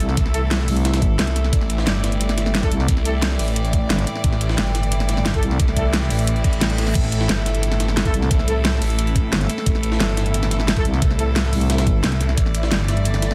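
Aggressive and tense, this dark technical drum and bass excerpt drives on a knocking electronic kick and an up-front dubstep kit with a huge snare and metallic hats, a gritty, pitched-up jungle sampler kit in the background, a swirling phased detuned saw bass and a growling FM bass, bowed chamber strings and a lo-fi warbling tape-like pad both pumping against the sidechain, and delayed brass stabs set further back, while a reverse cymbal at 6.4 s leads into a brief kick dropout before the kick returns to the dense, heavily limited mix.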